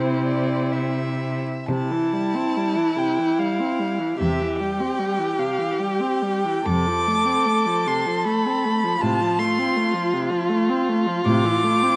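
Elegiac and yearning, this slow romantic string quartet movement in C major sways in a rubato 3/4 at 57-82 BPM, with a dark, woody violin singing the melody over a second violin's expressive line full of portamento, a smooth, even viola accompaniment and a rich, focused cello bass, all bowed with vibrato, set up front in a moderate recital hall reverb with a vinyl crackle, as the harmony moves from C through F to A minor before the piece is cut off at 12.0 seconds.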